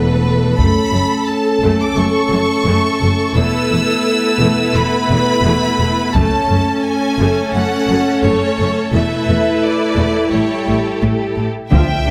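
Lightly reverberant and lush, this heroic, dark stretch of epic orchestral film score is cut from a longer piece, with a bright, intense violin section carrying the melody high above a focused second violin line and smooth, even violas. A distant, roomy French horn section holds dark sustained chords while the cellos, close yet in the background, and the double basses anchor the low end as the harmony moves between F#m and Esus4 before an A7. A taiko ensemble struck with hard sticks booms out in a live room from 0.6 seconds and again at 6.1 seconds, and timpani with calf heads join it only at 11.7 seconds.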